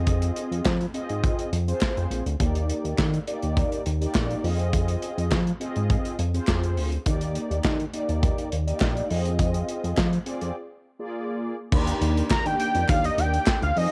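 A home recording on cassette with light reverb and a small-room ambience gives this feel-good, smooth slice of early-eighties boogie funk a soft, intimate glow, moving at 103 BPM in a straight 4/4 in Eb major. A glossy, nasal chorused synth bass sits up front beside a punchy, mid-forward studio drum kit with a medium-tuned snare, rolled-off top, crash cymbal, hi-hat and handclaps. Mellow synth brass, round and detuned with chorus and phaser, fills in dark chords over a gently rocking Fm7 to Ebmaj7 progression, while a very quiet group handclap adds a crisp, human, saturated snap. After a short break at 10.6 seconds on Bb7, the music resolves to Ebmaj7 as a swirling, bright string machine enters at 11.7 seconds. A fat analog lead with vibrato and a sub octave takes the melody up front from 12.3 seconds, bringing this fragment of a longer piece to its close.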